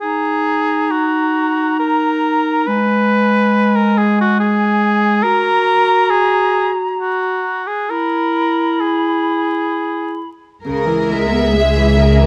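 In a rubato 3/4, this cinematic fragment of a longer piece feels moving and full of longing. For the first 10 seconds a woodwind trio carries it: a clear oboe with light vibrato and a warm clarinet sit up front in classical style, while a pure, metallic concert flute with vibrato floats high and distant above them. The harmony passes from D#m through a stretch of unaccompanied lines to F# and E. Around 10.7 seconds the winds give way to bowed strings on a C#m7 chord, where a focused double bass section sits close and up front, a lush viola section adds intense, smooth-topped vibrato, and a cello section plays smooth and even. From 11.1 seconds two violin sections hold the melody and a soft-attacked second line, one distant and the other expressive in the background. Close, detailed microphones catch every line within a moderate recital hall reverb, and a layer of vinyl crackle lends an aged patina.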